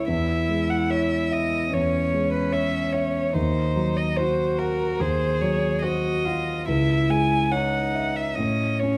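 Rubato and unhurried at 73 BPM in 4/4, this melancholic, solemn slow romantic movement for piano trio in C# minor is cut from a longer piece. Over the up-front concert grand's dark, mellow accompaniment and deep bass, a single violin carries the melody with light vibrato, an airy sul tasto bow and an intimate, close presence, while one cello shapes a pure, floating second line with a smooth top. The chords move from C#m/E through Cdim/Eb and C#m to A at 8.4 seconds, and detailed close microphones catch the players inside a moderate recital hall reverb.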